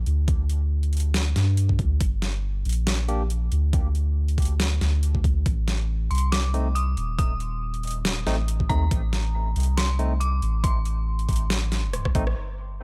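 A round, soft sub bass opens this brooding, meditative stretch of deep dubstep, sitting up front with a triangle-and-square-wave body and a fast attack that sustains into the low end. Almost at once the drums arrive in a swung half-time feel: an overdriven, knocking electronic kick sits forward in the mix, while a layered kit adds a deep snare, rim clicks and bright hats, both snare and hats passing through low-pass filters. A barky tine electric piano, clean and played through a combo amp, lands a brief stab at 3.1 seconds before returning at 6.5 seconds with filtered stabs trailing dub echo. Around the same moment an eerie, detuned FM bell enters high above as the melody, its inharmonic, full-bodied tone decaying into a long release and shimmering with chorus, tremolo and its own dub echo. The harmony moves from G minor to A diminished, and a drum fill near the end crowns a band accent at 12.3 seconds, all captured in a dry, gritty recording with little reverb, cut from a longer piece.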